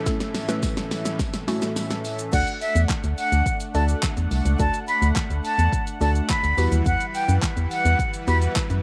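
A breathy concert flute carries the melody once the drop lands at 2.3 seconds, its soft-attack, straight tone heard close and trailed by tape echo. This bittersweet yet energetic dance-pop excerpt moves at 106 BPM in a straight 4/4, opening with a short build-up and drum fill before the drop. A smooth, airy supersaw holds detuned sustained chords that pump with sidechain, moving from A to D and then to Emadd9, while a dark, bouncy square-wave pluck with chorus fills in the accompaniment. The deep house drum kit sits up front with a deep kick, fat snare, hi-hat, handclaps, shaker and crash cymbal, and a faint, jingly tambourine adds sparkle only during the opening build. At the drop, a hollow, organ-like FM bass enters with a fast, decaying attack and sidechain pumping, sitting prominently beneath light digital reverb.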